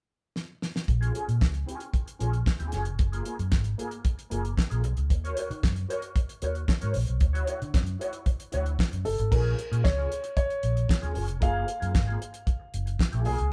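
A live-in-one-room sound with a modest small-room reverb carries this celebratory, danceable disco excerpt at 114 BPM, where a damped 70s drum kit with a fat snare, tight kick, dark cymbals and handclaps opens with a fill before a round, foam-muted fingered bass and a clean, mellow electric guitar with wah and spring reverb settle over A#m7, F#maj9, D#m7 and Dmaj9 chords, and an intimate grand piano with audible action noise takes the melody from 9.1 seconds.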